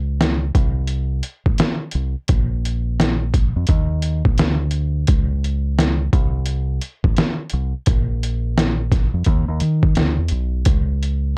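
A round, punchy fingered electric bass opens this hazy, nostalgic lo-fi hip hop excerpt at 86 BPM, with a sampler-style drum kit joining at 0.2 seconds on a lazy 16th-note swing. The drums sound pitched down, muffled and overdriven, with a thumpy kick, a medium-tuned snare and hi-hat, sitting up front beside the deep, dark bass. Light reverb and a dusky, mellow production give the short passage its faded, late-night feel.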